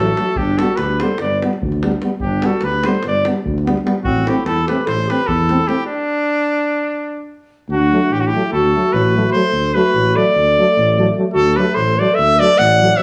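Balkan folk for a brass band, wild and exuberant, driving along at 295 BPM in eighths in a straight 9/8 and centred on D mixolydian. A clear trumpet carries the melody up front with light vibrato and a smooth top, touched by plate reverb, while a mellow clarinet plays a second line from a more distant, roomy position. A dark euphonium and a warm trombone, the latter set further back, fill in the accompaniment, and a breathy tuba with light vibrato anchors the bass up front, all played in a classical style. A deep davul drives the percussion from 0.1 s until 5.8 s, and the band hits a stop from 5.9 s to 7.7 s before the opening section returns over a D chord. The moderate studio ambience frames this short cut from a longer piece.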